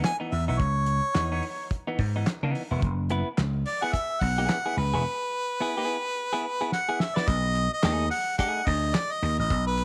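A clear harmonica with light vibrato leads this playful funk excerpt over a dark, clean semi-hollow electric guitar with spring reverb and a dry, damped 70s drum kit with fat snare, tight kick, hi-hat and handclaps, as a growly, punchy vintage slap bass joins at 0.3 seconds, the drums play a fill at 6.7 seconds, and the guitar stops at 8.6 seconds, all within a small room's ambience and a swung sixteenth-note feel.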